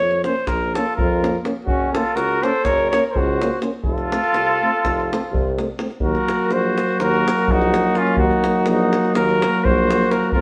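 Restless and virtuosic, this Balkan brass band fragment in 9/8 at 249 BPM in eighths sets a mellow, lightly vibrato trumpet melody up front over a distant, roomy tuba bass and a deep, close davul, with a smooth-topped euphonium and a soft-attack mellow euphonium in the background and a warm flugelhorn second line with vibrato joining at 0.8 s, moving through Bbm, Gb and F before shifting to Ebm at 6.0 s, all caught live in a wet stone room.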